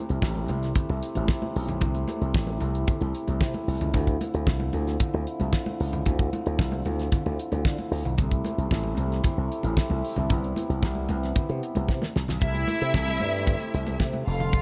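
A straight 4/4 disco groove at 113 BPM rides on a damped 70s drum kit with a fat snare and tight kick, a punchy, growly slap bass through an envelope filter, and ringing congas struck with hard hands in the background, set in a small room ambience. A mellow, roomy French horn section holds sustained chords in a classical style over C6 and Dm9, giving the piece a sultry, danceable mood. After a drum fill, a dark, woody studio string section enters at 12.4 seconds with lush bowed vibrato as a second line.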